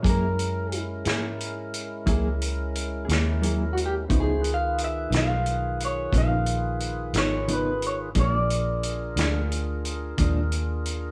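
A live-in-one-room band sound with a moderate large studio reverb frames this soulful, swaggering slow blues, a short cut from a longer piece at 59 BPM in 12/8 with a straight feel, in Db mixolydian, moving from Gb9 to Db9 and then Bb7. An electric guitar through a small old amp carries the melody with a slightly broken-up, picked tone, while a dark, clean mellow electric guitar with tremolo accompanies and a fat tonewheel organ holds sustained chords through a slow rotary speaker. Underneath, a round, foam-muted vintage fingered bass and a vintage drum kit with a tight kick, medium-tuned snare, hi-hat and rolled-off top sit up front in the mix.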